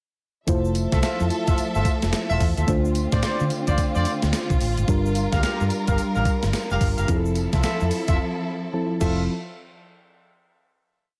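An up-front, gated 80s digital drum machine drives this flirty, bouncy new jack swing piece with a hard-swung, tape-warm beat of thumpy kick, gated-reverb snare, hi-hat, tambourine and crash, while a grainy tube shaker ticks sixteenths in the background. A dark, foam-muted fingered electric bass bounces through a swung synth-funk line with ghost notes and chromatic approaches, under a mellow, chorused FM electric piano holding round, full-bodied chords with grace notes, a lush bowed string pad with vibrato and portamento, and distant, roomy jazz horn stabs with delay from 0.9 seconds. After a break at 8.2 seconds where the electric piano slips in a short fill, the piece closes on a final hit at 9.3 seconds.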